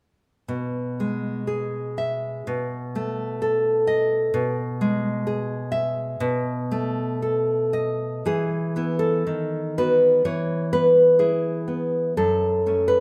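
Set in a moderate recital hall, the recording places a nylon-string guitar up front, with a reverb tail of about 1.5 seconds. This is a short cut from a longer romantic piece for solo classical guitar, tender and nostalgic in mood. The fingerpicked guitar has an acoustic, classical tone, spanning from F#2 to E5 as it moves freely in a rubato 2/4 at roughly 55-67 BPM in E major. The opening passage rocks between E over B and B7. From 8.3 seconds a new section begins on E, passes through B7 over D# and back to E, and reaches F# minor at 12.2 seconds before the excerpt closes at 13.0 seconds.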